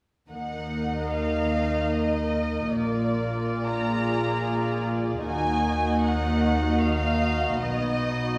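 Solemn and elegiac, this brief fragment of a slow romantic movement for string orchestra sways in three with uneven, rubato beats, every section entering together at 0.3 seconds and bowing sul tasto with soft attacks until 8.4 seconds. A warm first violin section carries the melody with light vibrato and an intimate, smooth top, while a dark second violin section traces a second line, violas supply a pure, floating accompaniment, and a clear double bass section anchors the bass with a dark cello section set in the background. The strings sound from further back in a wet scoring stage, its reverb lending the minor-key harmony a hushed, spacious glow.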